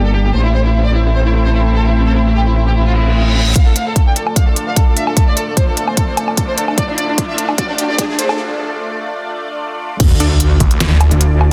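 A distant, expressive violin section carries the melody over a lush, detuned pad with sidechain pumping and a metallic, saturated wobble bass, opening this menacing heavy wobble dubstep excerpt in D minor at 149 BPM in a half-time feel. After a reverse cymbal swells in, at 3.6 seconds a punchy electronic kick and a layered kit with deep snare, crisp hats, crash and woodblock drive a build-up, as a filter sweep works on the violins, a riser sits in the background, and a drum fill leads into a break. The drop at 10.0 seconds brings back the wobble bass with a brief delayed supersaw stab and a snarling, growling distorted saw bass, all within a dense, heavily limited mix with light reverb.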